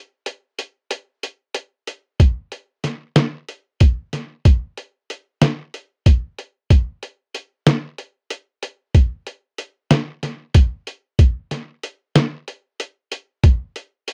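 A straight 7/8 pulse at 187 BPM, counted in eighths, drives this brooding progressive instrumental fragment, carried entirely by a lo-fi sampler-style drum kit of hi-hat, kick and snare that enters at 0.3 seconds and plays through to 14.1 seconds, with a new section arriving at 6.7 seconds. The kit sits up front, pitched down, compressed and muffled, with a thumpy kick and fat snare roughened by overdrive. The sound is a dry, close 1970s-style studio recording touched by light reverb, cut from a longer piece.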